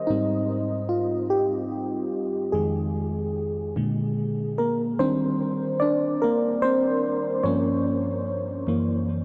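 R&B in a slow, straight 6/8 at 49 BPM, this short fragment in Eb major feels warm and intimate. A single mellow FM electric piano carries the whole passage, spanning F2 to D5 with a round, dark, warbling tone, a faint noise layer and quick-struck notes that decay softly. Chorus and delay thicken the piano, which sits up front even as a huge ambient reverb with an 8.9-second tail washes the dreamy mix. The harmony opens on Abmaj7, moves through Fm7 and Bb7, then turns at 5.0 s to Eb6 before darkening through Gm7b5 and closing on Gb7 at 8.6 s.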